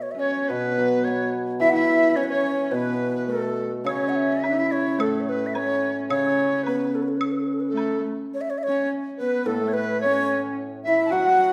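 This is a pastoral, graceful piece of Chinese traditional chamber music, cut from a longer work. It moves at 108 BPM in 2/4 with a rubato feel, tuned slightly low to A4 = 438 Hz. The end-blown bamboo xiao carries the melody with an airy, straight tone, crisp attacks and expressive phrasing. A large bamboo dizi, up front with a buzzing membrane and a pure tone with vibrato, shares a second line with a single bowed horsehead fiddle, whose husky, intimate voice glides with portamento and light vibrato. Beneath them, a shimmering hammered dulcimer rings out in the low register as accompaniment. A close, dry woodblock joins from 3.9 to 7.9 seconds, and a new section begins at 8.3 seconds, all set in a lush recital-hall reverb.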